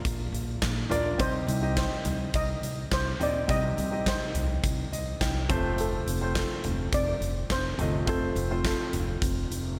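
A shimmering, dark-toned steel pan carries the melody from the first moment over a clear, polished baby grand piano, both touched with slapback echo, in this uplifting piano-driven pop excerpt built on Bb, Cm and F chords. A woody pizzicato upright bass and a huge acoustic arena drum kit, with a punchy kick, medium-tuned snare, hi-hat, toms and handclaps up front in a pumping room, join almost at once. The piano breaks into a fill from 4.6 to 5.8 seconds, and a scoring-stage reverb gives the whole band a big arena sound.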